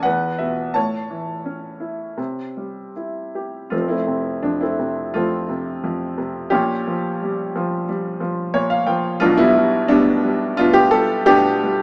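Loosely rubato over a 4/4 pulse, this classical solo piano passage unfolds with a relaxed, sunny lyricism, cut from a longer piece. A grand piano carries everything alone, spanning from deep in the bass up into its upper-middle register, with an intimate, boxy tone, short sustain and audible action noise that places it close and up front. The opening moves through E, A and C harmonies before settling onto F at 3.7 s, where a new section begins and drifts through a B-flat minor sixth color toward G over B. A brief piano fill from 8.2 s to 9.2 s adds a small flourish before the closing chord. Light reverb and a small-speaker character give the recording a modest, homely sound.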